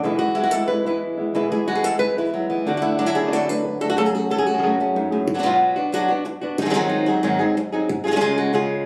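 A straight 4/4 pulse drives this fiery, mournful flamenco fragment at 183 BPM in F# minor, cut from a longer piece. Two flamenco guitars share the opening: one fingerpicked and bright, carrying the melody up front from F#2 to B4, the other thumb-plucked, dark and boxy, supplying stabs between E2 and G#4. The stab guitar drops out at 5.3 seconds, leaving the melody guitar alone until the close at 8.9 seconds as the harmony moves from Bm through G#7 to C#. The first stretch travels from E and D to F#madd9, and finger squeaks surface on both guitars. A moderate stone room reverb surrounds the playing, and the phone recording made in the room gives it a club-like ambience.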